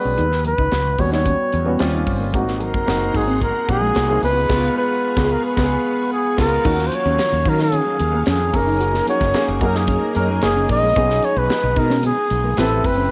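A straight 4/4 groove at 111 BPM drives this slick, urban slice of polished 1980s jazz-funk pop in Eb minor, cut from a longer piece. Crisp fusion drums, with a high-tuned snare, punchy kick, hi-hat and crash in an airy studio room, sit under a round, up-front fretless bass and very quiet, damped congas played with soft hands. Also up front, a breathy flugelhorn carries the melody with light vibrato and a whispered, intimate tone. Beneath it, a dark, mellow grand piano comps through a lush chorus while a clean, fingered electric guitar plays a riff in the background through analog chorus. From 2.7 seconds a shimmering sawtooth string machine of violins adds slow-attack sustained chords, and the band hits an accent from 4.5 to 6.7 seconds before the harmony settles into Ebm9, Gb69 and B69. Light studio reverb and a home cassette sound, with nothing above 7.8 kHz, give the mix a muffled finish.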